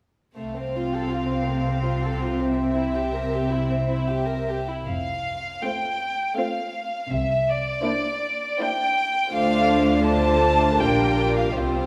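A close, smooth-topped violin section carries the melody up front, bowed sul tasto with light vibrato, in this serene, tender slow romantic movement for string orchestra in F major, moving at 80 BPM in a rubato 3/4. A second violin line, violas with vibrato, cellos and double basses fill in beneath with soft attacks and an intimate, warm blend, all five sections playing together from 0.4 s to 11.9 s. The strings sit in a wet recital hall reverb of about 1.4 s, and the passage is lifted from a longer piece.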